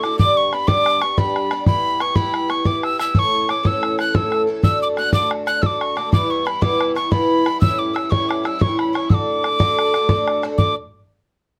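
Lively and bright, this short cut from a longer Celtic folk slip jig moves at 121 beats per minute in dotted quarters, in 9/8 with a straight feel and set in D major. A mellow wooden whistle carries the melody from B5 to F#6, its airy straight tone marked by a crisp attack and a little chiff, played expressively and sitting up front. Beneath it, a picked twelve-string acoustic guitar supplies the accompaniment from E2 to A4, its dark, boxy body and shimmering octave-doubled strings giving the harmony depth. A damped, tight bodhran drives the percussion, close and dry. All three parts play together from the start, with the guitar ending at 10.7 seconds and the whistle and bodhran carrying on to 10.8 seconds, as the harmony passes through G, Em/G, A, D, Em and A7 before landing on D. Close, detailed microphones and a moderate small-room reverb keep the sound intimate and clear.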